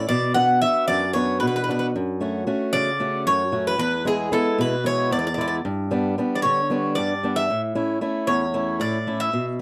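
Greek folk in a straight 7/8, this brief cut from a longer bouzouki-band piece feels sunny and hopeful, moving through Bm, F#m, E and G before settling on A. Up front, the bright, metallic bouzouki carries the melody with its double strings, some of them octave-doubled, and a slapback echo gives each picked phrase a ringing edge. Beside it, a boxy, fingerpicked swing-style acoustic guitar supplies the accompaniment, all caught in a dry, close 1970s-style studio sound with light reverb.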